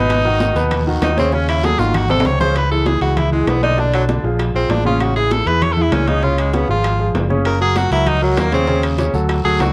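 An edgy, forceful tenor saxophone solos up front with vibrato through this fiery, driving Afro-Cuban jazz excerpt in C# minor at 196 BPM, over a concert grand piano with deep bass, long sustain and audible action noise, a dark, round fingered electric bass, bright high-tuned congas and ringing metal-shell timbales in the background, very quiet low-tuned bongos and woody claves, and a raspy guiro that drops out at 2.6 seconds and returns at 7.5 seconds, with a drum fill around 1.6 seconds, all under light reverb and the warbling pitch drift of worn cassette tape.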